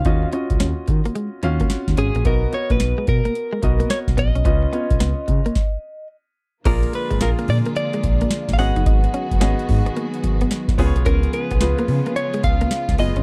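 A booming analog drum machine with a deep kick, crisp snare and metallic hats drives this bouncy, confident new jack swing cut at 109 BPM with a swung 16th feel, while a dark, gliding synth bass with portamento sits beneath a polished baby grand piano and two clean, direct-recorded electric guitars, one carrying the melody through slapback echo and the other playing a chorused riff. After a brief stop around 5.6 seconds, a lush bowed string section enters at 6.6 seconds with sustained chords as the harmony moves from Bb7 through Abm7 to Db7. The sound is dry and close, like a 1970s studio recording, with the drums up front in the mix.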